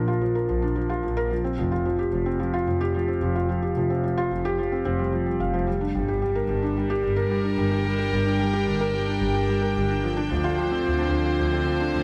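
A felt-muted upright piano plays a mellow, intimate riff with delay, up front beside a clear, bowed double bass section played sul tasto, before a rich chamber string section enters at 5.7 s with soft-attack sustained chords, giving this melancholic, moving piano-and-strings electronica excerpt a floating, pure sound within a moderate scoring-stage reverb.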